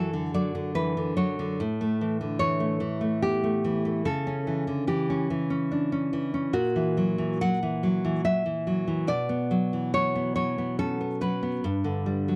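A fingerpicked nylon-string guitar opens alone on a D/F# chord, its fresh strings sounding full-bodied and up front in this sunny, romantic solo classical piece, played in 3/4 at 72 BPM with a free, rubato feel and tuned to A4 = 439 Hz. Over this short fragment of a longer work the harmony moves through A, A/C# and F#7/A# to Bm at 9.1 seconds, arriving on G at 11.6 seconds, with the guitar ranging from F#2 to F#5. The close, dry 1970s-style studio sound carries a light touch of reverb, giving the instrument a warm, intimate presence.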